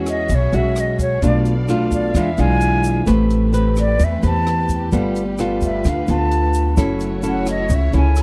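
Sunny and relaxed, this bossa nova fragment at 130 BPM in straight 4/4 features a mellow, airy silver concert flute solo with expressive vibrato and a soft attack, over fingerpicked nylon-string guitar and a woody, thumpy pizzicato upright bass, both up front. A compact cocktail drum kit adds natural hi-hat, rim click and a punchy kick, while a grainy egg shaker and a distant bowed string section sit in the background, the strings holding sustained chords with portamento. The harmony moves from E69 through Bm7b5, E7b9, Am9 and G9 to F#m7, captured in a close, dry 1970s-style studio sound.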